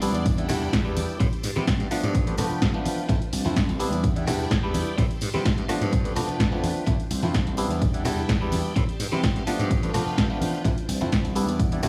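This is a sensual, funky stretch of filtered disco house cut from a longer piece, led by an up-front clav whose percussive, stringy accompaniment is treated with phaser and sidechain pumping. Beneath it, a glassy slap bass plays bright, punchy lines that pump with the sidechain, while a punchy electronic kick drum enters at 0.3 s and holds the pulse until 11.7 s. A house drum kit adds hi-hat, rim click and snare with tape-warm character, and tambourine and congas ring in the background with their own pumping. Further back, a vintage string machine swirls and warbles through sustained, slow-attack sawtooth chords, coloured by ensemble chorus and phaser. The harmony cycles through Em7, Am7, G7 and Dm7 in a repeating loop, all set in a dry, close studio sound with little reverb.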